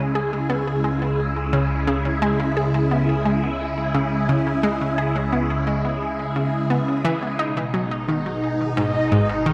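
Ambient, sequencer-driven space music at 87 BPM, this cosmic, hypnotic fragment from a longer piece sits on C#m before shifting to G#m at 7.4 seconds. A swirling, vintage string machine holds sustained chords up front, coloured by ensemble chorus and phaser, while a fat, nasal analog bass lies low beneath it. From 0.2 seconds a bright, round analog pluck riff with chorus and delay cuts through, and a wet spring reverb gives the whole echo-heavy mix a deep, spacious tail.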